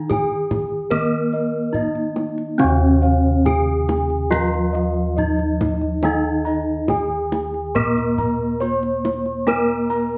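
This Javanese gamelan excerpt, cut from a longer piece, moves at a serene, ceremonial 70 BPM in a straight 4/4, centred on Eb in slendro tuning. A bronze metallophone carries the melody up front with a ringing, wooden-mallet tone, while a second metallophone in a lower register plays the accompaniment with mellow padded-disc mallets. Both share the shimmering beats of paired tuning. Bossed gongs fill out the texture in two roles: a bright, high set plays arpeggios, and a round, padded-beater set anchors the bass. Soft hands on the kendang add deep, close and dry strokes. At 2.6 s a third metallophone joins with airy, horn-mallet arpeggios high above, and the band plays live together in one room inside a large studio reverb.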